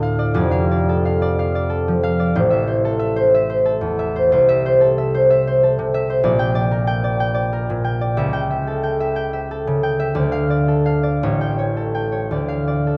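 A worn, warbly old cassette sound colors this recording, its pitch drifting gently while a moderate scoring-stage reverb with a 1.8-second decay gives the notes space to hang in the air. It is a classical piece for solo concert harp, wistful and mysterious in mood, moving in 6/8 at roughly 53-63 beats per minute on the dotted quarter, with free, rubato timing. The fingerpicked harp sits up front, its acoustic tone ringing and warm, reaching from a deep F1 up to G5. The harmony moves from Dm/F through Am, Am/C, Gm/Bb and A7/C# before settling back and forth between Dm and A7, arriving on Dm at 12.3 seconds. This 13-second passage is cut from a longer piece.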